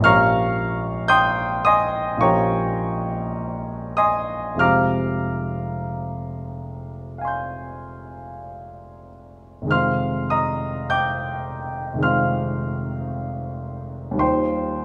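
This is an impressionist classical piece for solo piano in F minor, with a hazy, nocturnal mood. It moves slowly at 46-58 BPM in 4/4, and its rubato lets the pulse breathe and drift. The grand piano is the only voice, sounding warm, polished and up front as it spans from F1 up to G6, tuned slightly low at A4 = 437 Hz. Its harmony glides from Bbm6 into Fmadd9 at 4.6 seconds, then settles on Eb69 at 14.2 seconds. A moderate recital hall reverb gives the instrument a soft halo. The opening idea returns at 9.7 seconds, and the passage is cut from a longer work.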